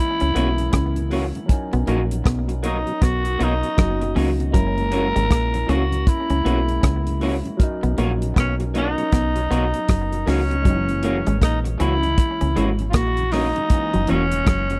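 This dry, close recording has the intimate feel of a 1970s studio, capturing a sweet, tender stretch of lovers rock reggae cut from a longer piece, moving at 79 BPM in B major with a swung sixteenth-note feel. A breathy, raspy tenor saxophone carries the melody up front with a vintage grit and a touch of tape echo, while a dark, round fingered bass, foam-muted and deep in the dub manner, sits close beside it. The damped 70s drum kit keeps hi-hat, tight kick and rim click dry, with a rolled-off top. Behind them, an overdriven tine electric piano barks through a combo amp with phaser and tape echo, and a clean semi-hollow guitar plays a compressed, hollow-bodied riff with its own echo. A twangy, slightly broken-up guitar through a small old amp adds bright picked stabs. A very quiet tonewheel organ fills out the harmony with chorus vibrato and a slow rotary speaker, as the chords sway between F#7 and Bmaj7 across the 14.8 seconds.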